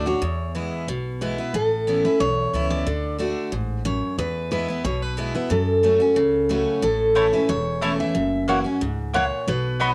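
A straight 4/4 drive at 182 BPM powers this joyful, lively bluegrass fragment in A major. A picked steel-string guitar carries the melody with a cassette-tape tint, while a second full-bodied dreadnought guitar picks the accompaniment through chords like Aadd9, F#m and F#7. A thumpy, woody pizzicato upright bass anchors the low end, and an up-front double-strung mandolin adds stabs from 7.2 seconds, all in a lightly reverberant home cassette recording.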